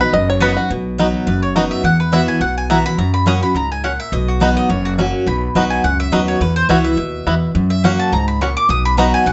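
Bluegrass with a joyful, lively swing, this short cut from a longer piece sets a twangy banjo melody played with fingerpicks over a full-bodied, old-stringed jumbo acoustic guitar and a thumpy gut-string upright bass, while a bright double-strung mandolin takes a solo from 0.7 seconds to the close at 9.3 seconds, all in a moderate studio room with a rolled-off top end.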